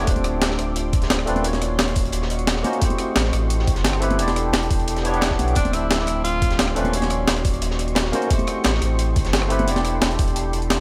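Lightly reverberant and intimate, this rolling, soulful liquid drum and bass passage sets a bright, barky tine electric piano with lush chorus and delay over a shimmering, ethereal pad pumping in the background, an up-front deep sine sub bass, a gritty pitched-up sampled breakbeat with a thumpy electronic kick, a darker crunchy second break and soft-handed congas tucked behind, while a faint electronic swell at 5.0 s ushers in a breathy, vibrato-laden tenor saxophone phrase from 5.6 to 7.4 s over cycling minor-seventh chords.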